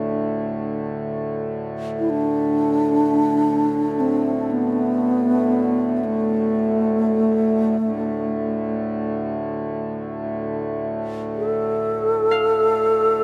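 Haunting and meditative, this short excerpt of world meditation music floats in free time. A reedy, breathing pedal harmonium sustains a low, mellow drone up front throughout, its vintage, band-limited tone giving the piece a worn, intimate foundation. At 2.0 seconds a pure bass flute enters with the melody, played with soft attacks, gentle vibrato and lifted highs, sitting up front and trailed by tape echo. A ringing, fingerpicked Celtic harp is heard only briefly, in a quiet acoustic touch at the very start and again from 12.3 seconds, lending a warm sparkle to the texture. A huge ambient reverb surrounds the whole, giving each note a long, spacious tail.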